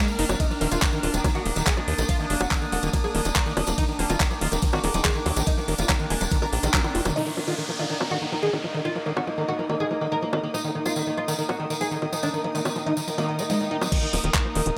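A woody, plectrum-plucked oud opens this intense, hypnotic psychedelic trance excerpt at 142 BPM in straight 4/4, its melody treated with phaser, sidechain pumping and dub echo. A lush bowed string section sits in the background and a very quiet, juicy blip pluck traces a second line. A slow-attack drone with moving overtones, chorus and phaser holds sustained chords behind them. The drop arrives almost at once: a knocking, tape-warm kick up front, a garage kit with metallic hats, bongos, handclaps and toms under low-pass filters, a distant jingly tambourine, and a punchy sawtooth sequencer bass carrying tube saturation. A squelchy, distorted acid bass riff with filter sweeps and dub echo runs throughout, pumping with the mix. After a drum fill and band accent, the kick and sequencer bass fall away around 7 seconds as a downlifter and swell enter, before the kick returns at 13.9 seconds under light digital ambience.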